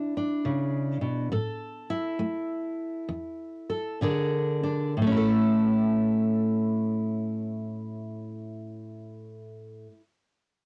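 Swaggering and rollicking, this short excerpt of acoustic country blues moves with a loose swing in 4/4. A single fingerpicked steel-string acoustic guitar carries everything, a dreadnought sitting up front with a warm tone and a cassette-tape grain. The opening stretch slows down through its first 5.0 seconds, and a stop falls from 1.3 to 4.0 seconds before the guitar carries on into the next section. The harmony passes from Bmadd11 to A5 and Bb7, then settles on A at 5.0 seconds. A short, wet booth ambience and the character of a home cassette recording give the performance an intimate, lived-in feel.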